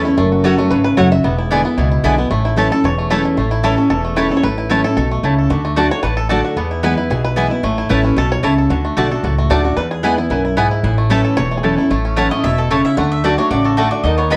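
Joyful and virtuosic, this fast, straight-feel bluegrass excerpt opens with a bright, twangy fingerpicked banjo taking the lead over a full-bodied, up-front dreadnought guitar, a thumpy pizzicato upright bass, and woody mandolin stabs coloured by tape echo. At 12.2 seconds a second mandolin takes over the melody for the closing solo. The whole recording carries the worn, warbly pitch drift of old cassette tape within a moderate studio reverb.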